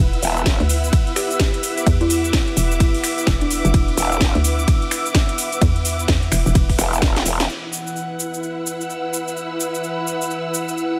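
A growling, wobbling bass snarls up front through this swaggering, bouncy bass house drop, riding on a hollow, knocking FM bass, a punchy tape-warm kick and a house kit of cracking snare, metallic hats, cabasa, finger snaps and ride, while a plucked, woody kalimba melody rings from 1.2 to 3.7 seconds over a bright, resonant sweeping pad and dark, lush symphonic strings that pump with the beat, before a drum fill at 7.1 seconds leads into the next section.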